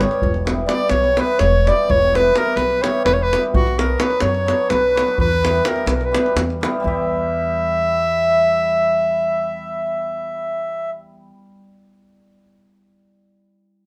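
A close-miked clarinet leads this Balkan wedding-band piece, its soft-attacked, classical-style melody sitting up front with a virtuosic yet bittersweet air. Set in E dorian with a raised fourth, the music moves in a brisk 7/8 at 254 BPM, counted in eighths, over a harmony that shifts from E minor to B minor and back. A very quiet accordion plays a second line in the same register, its tone reedy, round and airy. Beneath, a bright cimbalom rings and shimmers in accompaniment, while a plucked upright bass gives a woody, growly low end. A tight davul drives the rhythm until 7.1 seconds, just after the music turns to a new section at 6.8 seconds. The other parts play on, with the cimbalom the last to fall silent at 11.6 seconds. The band plays live in a small room with a wet reverb, giving this fragment of a longer piece an intimate, warm closeness.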